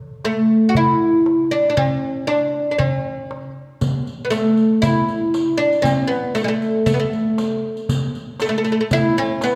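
A woody, fretless oud with plectrum-plucked double strings sits up front and carries a passionate, stately melody in A maqam rast at 118 BPM over a clay-shell darbuka with natural skin played by soft hands, joined at 3.8 s by a distant riq with dark jingles, in this Arabic maqam ensemble fragment, all placed in a moderate scoring-stage reverb.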